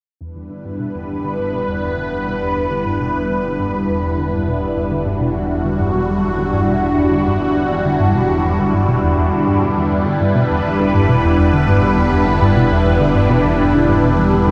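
Cosmic and mysterious, this ambient space-music excerpt moves at a steady, straight pulse, built around a sequencer and sitting on a single Em7 chord throughout. A tight, driving sequenced synth riff fades in from 0.2 seconds in the low register, its detuned sawtooth and square tones given a plucked filter edge, chorus and tape echo. Beneath it a fat analog bass fades in at the same moment, holding a low E with a thick, detuned sawtooth sound and a filter sweep. A lush unison pad enters at 0.4 seconds with sustained chords, its thick, bright tone sitting up front with a slow attack, long release, sub octave, chorus and phaser. A very quiet bubbling texture of random, resonant filter steps arrives at 0.7 seconds, bright and carrying its own built-in reverb. The whole mix is bathed in a long, lush hall reverb and carries the soft grain of cassette tape.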